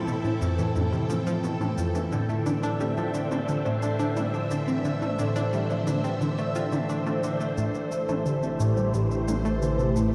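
Drenched in a huge ambient wash and played back through a big system in a bare stone room, this mysterious, cosmic stretch of sequencer-driven space music sets a swirling, phased string machine and fingerpicked concert harp arpeggios alongside a bright, wave-folded analog pluck riff, a faint bubbling stepped-filter texture and electronic cabasa and toms, until at 7.6 s a deep, round analog bass enters beneath an Am7 as a filter sweep washes over the synth arpeggio sound.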